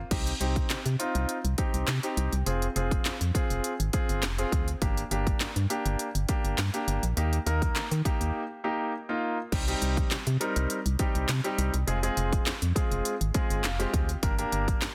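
Dance-pop at 102 BPM with a summery, carefree mood, built on a hollow, percussive organ-like FM bass and an intimate concert grand piano with audible action noise, both pumping to the sidechain, over a punchy house kit with cracking, softly clipped snare, handclaps and crisp hats, moving through Cm, Fm, Gm and Eb in a dry, dense, heavily limited mix, with a break at 8.3 seconds and a piano fill at 13.3 seconds in this short cut from a longer piece.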